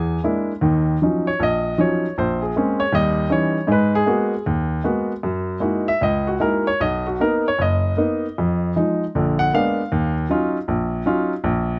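A late-night, swinging mood settles over this short solo jazz passage in E flat minor, cut from a longer piece and lasting under 12 seconds. A baby grand piano carries everything alone, its tone warm, natural and up front with a short sustain, spanning from F#1 up to Ab5. The tempo sits at 156 BPM in 4/4, with a swung eighth-note feel and a rubato looseness. The harmony is rich and colorful, opening on an E7#11 before settling onto Ebm9 at 0.6 seconds and moving through minor ninths, an altered Eb7b9, a lush Gb13 and a Bmaj7 before returning home to Ebm9 at 9.9 seconds. The sound is dry and intimate, captured by close, detailed microphones with little room ambience.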